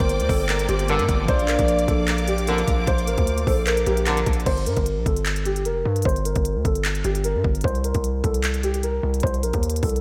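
This trap-flavored hip hop excerpt moves with a dark, menacing half-time feel and a dreamy sheen from a lush hall reverb. A mellow, boxy grand piano carries the melody throughout, filtered and trailed by tape echo. A distorted, aggressive 808-style bass and a hard-hitting trap kit with clipped kick, crisp hi-hats, handclaps and crash sit up front the whole way. In the opening seconds, a velvety detuned synth lead with chorus and vibrato adds a second line in the background, while a ringing fingerpicked harp and bowed symphonic strings with smooth vibrato fill out the harmony over G minor and B-flat chords. Bright classical-style brass stabs punch in at 0.9 seconds, and after about 4.5 seconds the orchestral layers fall away, leaving piano, bass and drums to carry the second section.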